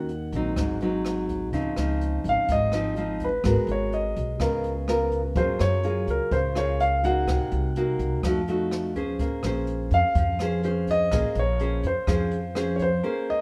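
A grand piano, a nylon-string guitar and an upright bass open together in this smooth, melancholic bossa nova excerpt in Bb minor, moving at 125 BPM in a straight 4/4. The piano carries the melody in its upper middle register, sounding intimate and up front, with its natural action noise audible. The fingerpicked guitar supplies classical-toned accompaniment across a broad range, while the woody, thumpy pizzicato bass anchors the low end. A brush drum kit of hi-hat, boomy kick and rim click sits further back, dark and rolled-off at the top. The harmony travels through lush jazz chords such as Dbmaj9, Gbmaj9 and F7b9 before settling on Bbm9, all in a light reverb. The drums drop away at 12.9 seconds and the bass at 13.0, leaving piano and guitar to ring until 13.4 seconds, where the clip is cut from a longer piece.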